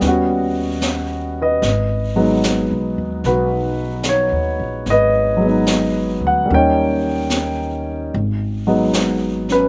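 A baby grand piano, upright bass and brushed drum kit begin together on an altered D#7 chord, setting up a melancholic, smoky jazz ballad in G# minor at 74 BPM, swung in 4/4. The piano carries the accompaniment up front, its natural, warm tone ringing with long sustain across voicings from F#3 to G5. Beneath it the pizzicato upright bass sounds woody and growly, its steel strings holding the low register between G#1 and D#2. The brush kit sits quietly behind the piano, distant and roomy, with a high-tuned snare, hi-hat and a rolled-off top. The harmony moves to G#m7 at 1.6 seconds, turns to D#7 at 6.5 seconds and returns to G#m7 at 8.1 seconds, heard dry in this short fragment of a longer piece.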